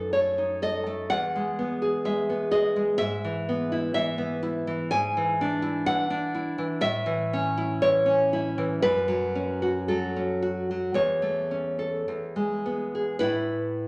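Unfolding in a rubato 2/4, this short, nostalgic romantic passage cut from a longer piece features a bright, up-front fingerpicked classical nylon-string guitar playing solo from 0.0 to 13.9 seconds, spanning a low bass to high treble register and moving through E and A harmonies within a wet, spacious studio reverb.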